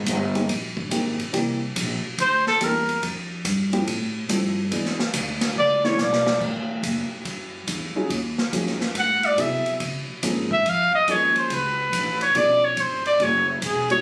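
A short excerpt of swinging big band jazz opens with a woody, thumpy upright bass plucking its line, joined almost at once by an airy drum kit with a punchy kick, medium-tuned snare, hi-hat, ride and crash cymbal. A dark, mellow baby grand piano comes in at 0.3 seconds to comp the harmony, its short sustain and audible action noise lending an intimate, natural character. The trumpet carries the melody as a solo, sitting up front with a soft attack, light vibrato and scooped notes that give it a vintage, brassy feel; it plays brief phrases at first, then settles into a longer line from 9.0 seconds to the end. A drum fill just before 6.4 seconds marks the return of the opening section, and the chords move through rich extended and altered colours. The sound is heard through a phone in the room, with moderate studio reverb and a murmur of club ambience.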